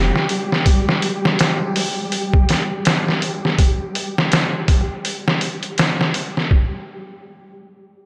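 A swung sixteenth-note groove in 4/4 carries this hypnotic, brooding trip hop excerpt, driven by a compressed, pitched-down sampler-style kit of hi-hat, thumpy kick and medium-tuned snare that sits up front from 0.2 seconds. Beneath it, a quieter flickering granular texture with a detuned triangle tone and slow attack hangs on a lone Fsus2 before the harmony drops away, sustaining with a long release until 6.5 seconds. A dreamy plate reverb soaks the mix, leaving the muffled drums to carry on alone to 6.7 seconds.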